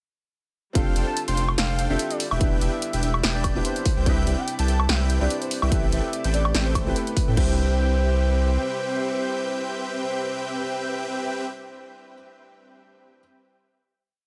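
Euphoric and bright, this short future bass piece runs at 145 BPM in C major with a half-time feel and a light swing on the sixteenths, moving through F6/9, Em7, Cmaj7 and Am9 before settling on a final Cmaj7 chord at 7.4 seconds. A felt-muted upright piano opens alone at 0.7 seconds with soft, mellow, intimate held chords in a rootless voicing and syncopated pushes, and it lingers until 13.2 seconds. The drop arrives at 0.8 seconds: a punchy, layered electronic kick sits up front in half time, joined by a big-room dance kit of snare, closed and open hi-hats with rolls, crash and a high woodblock. A deep, thick, saturated sine sub bass follows the chord rhythm, while huge, lush detuned supersaw chords play a dotted-rhythm riff in open voicing, doubled in the background by an airy, dreamy lead of soft arpeggios on a single high note with a noise layer and a moving notch. Over this, a round, octave-layered synth lead carries a repeating riff melody with vibrato, chorus and dub echo, and a rich, earthy chamber string section holds a bowed pad beneath, with sidechain pumping on every part except the drums. 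The mix is dry, with the bass and kick the most prominent.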